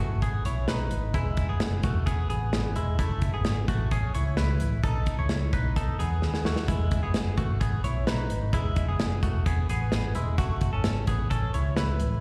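A bright, twangy clean electric guitar plays compressed arpeggios through phaser, analog delay and slapback echo over a dark, round, foam-muted picked bass and a warm, up-front acoustic drum kit with a tight kick and a medium-tuned snare in this breezy jangly indie pop excerpt at 130 BPM in E major, moving from Emaj7 through F#m7 and B7, with a drum fill at 6.2 seconds, all heard as a live gig through a PA with recital hall reverb and vinyl crackle.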